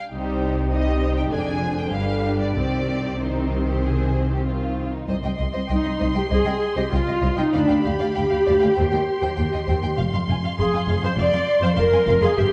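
Up front and warm, the viola section carries the accompaniment in this dramatic, urgent C minor excerpt, a quick classical-period movement for string orchestra at 98 BPM in 4/4, with uneven beats and rubato. Above it, a distant, lush violin section sings the melody between C5 and C6, while a second violin section with a smooth top plays a second line; an even-toned cello section and a focused double bass section share the bass, and every bowed part plays with vibrato. The dark production sits in a wet scoring-stage reverb, and after new material arrives at 5.1 seconds the harmony moves through G7 and back to C minor before turning to F minor at 10.0 seconds.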